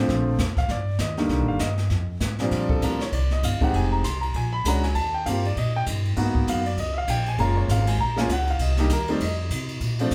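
Warm and relaxed, this excerpt from a longer jazz piano trio performance swings along in Bb major at a brisk 197 BPM in 4/4, with a gentle swing on the eighth notes. A baby grand piano carries the melody as a solo throughout, its natural tone up front and ringing with long sustain as it roams from Bb2 up to C6. The upright bass plays pizzicato underneath, woody and growly with steel strings, while a jazz drum kit played with brushes enters at 0.1 seconds, blending brushed snare, hi-hat, ride and a boomy kick with dark cymbals and an airy, polished feel. The harmony moves through colorful changes such as Bbmaj7, Bb7alt, Ebadd9 and Gbmaj9 across two passages of the same section, the second beginning at 2.5 seconds. The trio sounds like a band playing live together in one large studio, wrapped in a moderate reverb.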